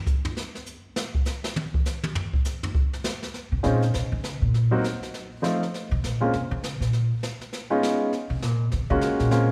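A swung 4/4 at 201 BPM drives this moody, cool jazz piano trio excerpt, opening with an up-front brushed drum kit soloing on snare, hi-hat, toms and a boomy kick, before a woody pizzicato upright bass takes a solo from 3.5 s and a clear grand piano joins at 3.6 s, the trio ringing in a moderate concert-hall reverb over chords moving from Dbmaj7 through F7 and Bbmadd9 to Gbmaj9.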